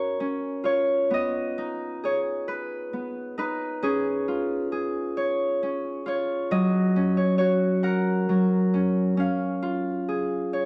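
A lone Celtic harp opens the recording and carries it to the end at 10.7 seconds, fingerpicked and ringing, placed up front with a warm, acoustic tone. This is a sleepy, tender children's lullaby in a gently rocking 6/8, played with a rubato feel that lets the time breathe. The harp moves through a short chord progression before coming back to the chord where it began. The notes stay in a comfortable middle register, never climbing too high or sinking too deep. A moderate recital-hall reverb surrounds the instrument, and the overall production is dark and warm, well suited to drifting off. The passage is cut from a longer piece and stays within a single section throughout.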